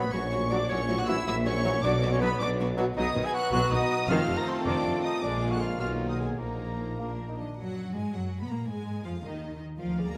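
A focused, lush symphonic violin section carries the melody through this stormy, urgent romantic orchestral passage in 6/8, cut from a longer piece. Beneath it sit smooth, rich violas, expressive cellos with portamento, soft-attacked double basses and an intimate, close second violin line. An airy, very quiet flute ensemble, a mellow, distant cor anglais and a warm clarinet add second lines, while a dark French horn section and tight trombones sustain chords and a roomy tuba holds the low end. A mellow bassoon appears briefly at 7.0 seconds, and the other winds and brass drop out at 7.4 seconds; once the bassoon fades at 7.6 seconds, the strings continue alone in a wet scoring-stage reverb.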